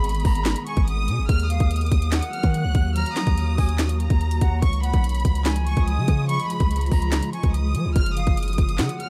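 A dark, digitally ambient production opens this brooding, menacing trap excerpt at 144 BPM in a half-time feel, with up-front electronic drums (hard-clipped kick, sharp snare, metallic hats and handclaps) over a deep, sine-like 808 bass that sustains until 8.9 seconds. A lush bowed violin section carries the expressive, vibrato-rich melody high above, while a breathy silver concert flute plays a close-miked second line, both trailed by tape echo. Beneath them, a blurred granular cloud pad holds slowly evolving chords with its own built-in reverb, moving through G#m, D#m, C# and F#.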